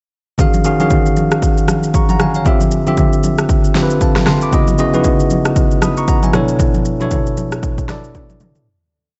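A swung, late-night amapiano groove rides on a steady shaker, soft kick and syncopated rim clicks from an overdriven, punchy deep house kit with a fat snare, while ringing, hard-handed congas interlock in the background. Up front, a bell-like tine electric piano plays bright, clean, syncopated minor eleventh chords in spread voicings, adding grace notes and short fills. The soulful piece sits in a dark mix with light reverb, fading out from 6.6 seconds as a drum fill at 8.1 seconds closes it.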